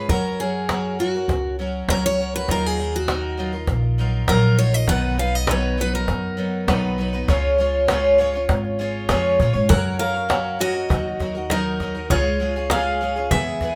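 A straight 4/4 pulse at 100 BPM, carried by a woody, compressed cajon with faint snares and a dark, thumpy pizzicato upright bass on gut strings, sets a peaceful, nostalgic acoustic folk mood in F# major, tuned to A4 = 442 Hz. Up front, a full-bodied dreadnought steel-string guitar takes a bright picked solo melody through the first 9.7 seconds, over a shimmering, octave-doubled twelve-string that adds accompaniment with audible finger squeak. At 9.7 s a metallic, nasal lap resonator guitar, played with fingerpicks and slide, enters quietly with a second line as the chords move through F#, D#m and C#, all set in a wet small room.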